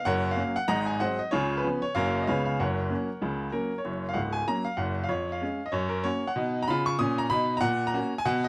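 A clear, intimate baby grand piano plays exuberant, swinging stride jazz alone, its up-front, natural tone carrying audible action noise and long sustain through a moderate club reverb with vinyl crackle, in an 8.5-second passage cut from a longer piece.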